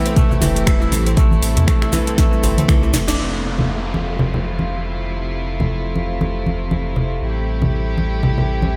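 Echo-heavy and lightly reverberant, this driving, warm afro house fragment at 119 BPM with a swung 16th feel opens on Am7 as a deep, up-front electronic kick, an afro-pop kit of finger snaps, metallic filtered hats, sharp snare and toms with dub echo, grainy cabasa, bright soft-handed congas, and a very quiet, cracking djembe join ringing fingerpicked kora arpeggios, distant bowed chamber strings with light vibrato and 12-bit sampler grit, and a round, tube-saturated sine sub bass, with the kora, strings and sub bass all pumping, before a drum fill and band accent lead into a Fmaj7 section at 3.2 s, where the strings, congas and sub bass carry on under an electronic downlifter until the return to Am7 at 7.2 s.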